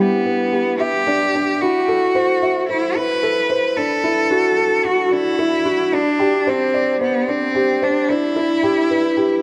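A straight 4/4 pulse at 111 BPM carries this intimate, moving electronica fragment in E minor, cut from a longer piece, as the chords pass from Em7 through Am, Dadd9 and Csus2 before settling back on Em. A felt-muted upright piano plays a soft, dark riff with a thick, mellow tone up front, while a single bowed cello sings the melody with rich vibrato and expressive portamento. Both parts carry tape echo and sound throughout the 9.4 seconds, set in a huge ambient reverb.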